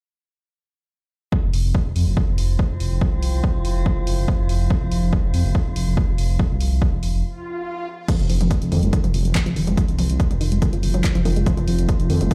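A dark, detuned saw bass rumbles up front in this relentless peak-time techno excerpt, pumping against a punchy, tape-toned electronic kick, while an analog drum machine's hats, claps, toms and crash pulse alongside an eerie, metallic FM drone; after a stop at 7.2 seconds an electronic swell leads into a bright, chorused analog pluck riff with saturation, delay and a filter sweep from 8.1 seconds.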